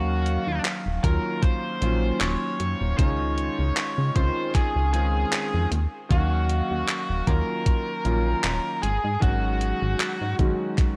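Hazy and melancholic, this vaporwave excerpt sets a biting, overdriven lead guitar melody, roughened by vintage 12-bit sampler grit and tape echo, over an electric grand piano with clangy low notes, long sustain and lush chorus. A glossy, detuned synth bass with a plucky filter sits up front, a gated 80s digital drum machine adds handclaps and hi-hat from 0.3 s, and a thumpy electronic kick joins at 1.0 s. The lightly swung groove moves from Ebm9 through Dbmaj9 to Ebm9 again before resting on Ab7sus4, with a touch of reverb over the mix.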